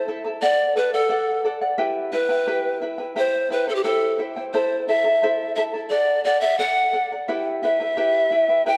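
Andean folk in a festive yet melancholic mood, where a breathy, bright bamboo pan flute with vibrato and a soft, chiffy attack carries the melody up front over a mellow, fingerpicked charango whose shimmering double strings supply the accompaniment, all set in a moderate concert-hall reverb with a dark, warm production across this short 8.8-second fragment of a longer piece.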